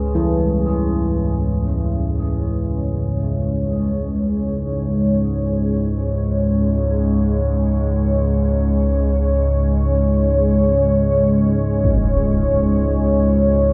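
Drifting in free time, this dark ambient drone in C# minor feels desolate and unsettling, a fragment lifted from a longer piece. Underneath, an analog drone holds low sustained tones up front, its sawtooth and pulse-wave character evolving through pulse-width modulation and a moving notch, softened by subtle chorus into a mellow bed. Above it, a deep, moody pad of detuned sawtooth unison with a sine sub octave sustains dark chords with slow attacks and long releases, thickened by chorus and its own reverb. Carillon bells with a bronze, ringing tone and a padded clapper spell out soft arpeggios from the start until 6.3 seconds, trailing into a diffuse ambient delay. At 11.8 seconds a huge, bright impact hits briefly through a low-pass filter. The whole scene sits in a vast, echoing space whose long reverb tail makes every sound hang in the air.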